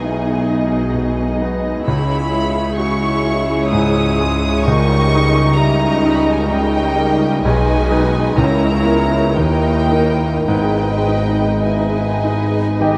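This excerpt from a romantic movement for piano and orchestra opens with piano, strings, horns and tuba sounding together, passionate and brooding in a rubato triple metre. A clear grand piano carries the melody from the background, its action noise audible, while a violin section with light vibrato and a soft, sul tasto attack sings the line high above it. Darker violins trace a second line beneath, and woody, lush violas fill in the accompaniment over very quiet French horns holding sustained chords. The bass is shared by a mellow tuba and by floating, pure cellos and double basses bowed over the fingerboard. At 12.8 seconds a hollow flute, a distant oboe and a punchy clarinet add brief touches to the second line just as the passage is cut off, the harmony settling from a diminished chord through D# to G# minor. A huge, wet reverb places the whole orchestra in a vast, echoing space.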